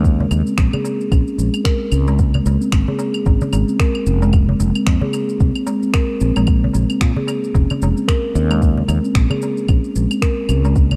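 A dark production with light reverb and the feel of a small room frames this meditative organic downtempo excerpt, which moves at 112 BPM in 4/4 with a gentle 16th-note swing. Up front, a steel tongue drum struck with soft rubber mallets plays round, pure, ringing arpeggios, its mellow tone shaped by a low-pass filter sweep and a digital delay. A fretless electric bass sits equally forward, growly and direct, carrying the low end under a progression that moves from Eb5 through Db, Fm and Bbm7 before returning to Eb5. A soft electronic kick drum with studio reverb anchors the groove, while a produced layer of overdriven electronic shaker, claves and finger snaps adds grit in the background. A small metal-shell darbuka joins at 0.2 seconds, crisp, high and close, and the whole passage holds a single calm section until it ends at 11.0 seconds.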